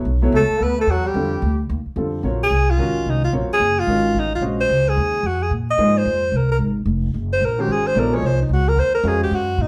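A warm baby grand piano and woody pizzicato upright bass open this spiritual, cool modal jazz excerpt in Bb minor at a swinging 220 BPM, joined at 0.3 s by a bright, punchy, distant trombone that sounds only briefly and then by a clear, close-miked alto saxophone with vibrato, which stands up front with the bass and takes its solo from 2.2 s amid a wet studio reverb.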